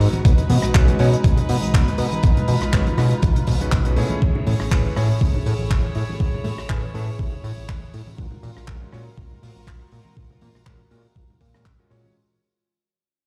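An overdriven, thumpy electronic kick sits up front in this sleek, groovy nu-disco cut at 121 BPM with a light 16th-note swing, joined by a fat, detuned sawtooth analog bass, a dry 70s drum kit with handclaps, hi-hat and rim click, ringing congas in the background, a clangy, delayed electric grand piano entering at 0.7 seconds, and distant, floating bowed strings pumping under sidechain, all moving through B6, Amaj7 and F#maj9/A# in a large studio reverb as the excerpt fades out.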